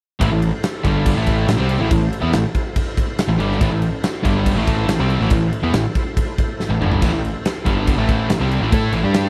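This dry, close-sounding fragment of a classic rock track is gritty and driving, with a huge arena drum kit set up front: punchy kick, medium-tuned snare, bright crash and splash cymbals and toms, all ringing in a pumping hall. Three picked electric guitars share the riff: a tight, bright distorted one, a crunchy overdriven one that stays in the background, and a sludgy, double-tracked one that is very quiet. Beneath them, a fuzz-soaked picked electric bass, heard direct and amped, holds down the low end with a gritty growl. A tonewheel organ, full and lightly overdriven through a slow rotary speaker with chorus vibrato, holds very quiet sustained chords. The whole band enters together at 0.2 seconds, with the drums stopping at 9.2 seconds and the other parts playing on to 9.3 seconds, and the drums break into a short fill between 6.6 and 7.0 seconds.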